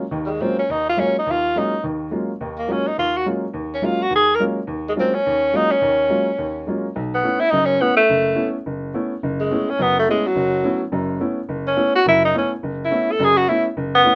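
A woody, boxy upright piano with short sustain opens at 0.1 s, joined almost at once by an up-front tenor saxophone carrying the melody with vibrato and a vintage character, in a fast swinging jazz passage at 211 BPM that feels spiritual and open. The harmony rests on a suspended Ab13sus4 chord before moving to B9sus4 at 7.0 s. The sax sits clearly above the piano in a moderate small-room ambience, with a rough home-demo sound to this fragment of a longer piece.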